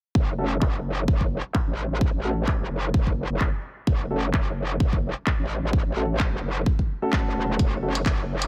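Gritty and swaggering, this short cut from a longer bass house track moves at 129 BPM in F# minor with a 16th-note swing, opening on an F# minor chord. A punchy, tape-tinged electronic kick sits up front from 0.1 seconds, joined by a metallic, saturated FM wobble bass with chorus and sidechain pumping, while a dark, mellow concert grand piano plays low-pass filtered stabs with digital delay and pumping. A garage kit of handclaps and hi-hats enters at 0.6 seconds in a fairly dry mix, and filter sweeps run across the drums and piano through to the end.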